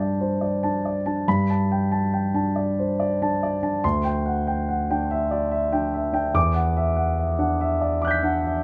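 Luminous and serene, this short excerpt from a longer impressionist solo piano piece unfolds in G major at about 71 BPM in a rubato 3/4. A concert grand plays alone for the full 8.6 seconds, ranging from D2 up to B6, its deep bass and long sustain giving the chords an open, resonant bloom. The harmony drifts from Gadd9 to D9sus4 at 3.8 seconds and settles on Em9 at 6.4 seconds, each colored chord hanging in the air. The piano sits up front in a light reverb, close and intimate while still breathing gently around the notes.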